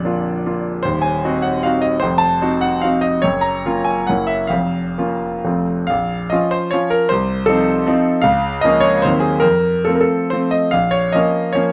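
A bright concert grand piano carries this short romantic triple-time dance alone, its brilliant upper notes ringing out over a deep bass that reaches down to Bb0, near the bottom of the keyboard. Set in Bb minor and triple time, the music moves with dotted rhythms and a free, rubato pulse that drifts between 122 and 166 BPM, giving it a capricious yet nostalgic air. The opening phrase wanders through dark, colourful harmony, touching diminished and flat-ninth dominant chords and a lush Gbmaj7 before settling on F. A second phrase begins at 5.9 seconds, returning to Bb minor and circling through a half-diminished chord back to F before coming home to Bb minor at 10.7 seconds. The piano sits close and up front, with light reverb adding a touch of space to this brief passage taken from a longer piece.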